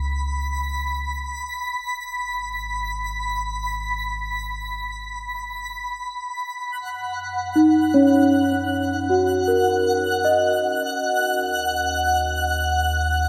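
Serene and reflective, this brief ambient passage, cut from a longer piece, drifts at 78 BPM in a gentle 3/4. A twinkling granular texture sits up front with a sparkling, octave-up shimmer, its slow attack and long release bathed in its own reverb. Beneath it, a round, deep analog bass holds sustained low tones, fading out over the opening stretch and fading back in after 6.4 seconds. At 7.6 seconds a bell-like celesta enters with delicate, sweet arpeggios, its dark, smooth tone placed up front and trailed by delay. The harmony moves from Bsus2/C# to G#m, then F#6 and D#m, all set in a huge, wet reverberant space with a long 7.8-second tail.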